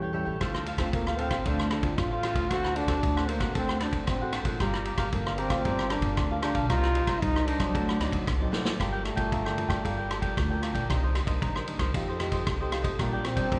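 A crisp, mellow cavaquinho, a thumb-plucked classical nylon-string guitar and a woody, thumpy upright bass on gut strings open this bittersweet, yearning samba and choro fragment, with a gritty, saturated vintage drum kit with dark cymbals and a tight kick coming in up front at 0.4 seconds. At 0.9 seconds a warm trombone enters and carries a jazz-style solo throughout, shaded with light vibrato and scooped notes, while a drum fill at 8.5 seconds ushers in a new section. The whole band sits in the moderate reverb of a church or concert hall, its sound kept soft at the very top, and the passage is cut from a longer piece.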